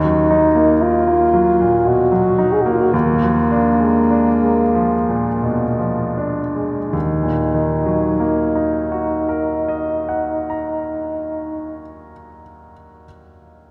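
A French horn and grand piano begin together in this elegiac, yearning romantic duo, a fragment of a longer classical piece in Eb minor. The music moves slowly in 3/4 at roughly 38-59 BPM with a rubato feel, and it slows down through the opening section as the harmony shifts from Eb minor to Bb7 over Eb. The horn carries the melody up front with a clear, roomy tone, light vibrato and a soft attack, while the bright piano accompanies with a brilliant, polished sound and long sustain. A new section arrives at 6.9 seconds, returning to Eb minor. The horn falls silent at 11.8 seconds, and the piano rings on alone until 13.7 seconds, all within the lingering reverb of a concert hall.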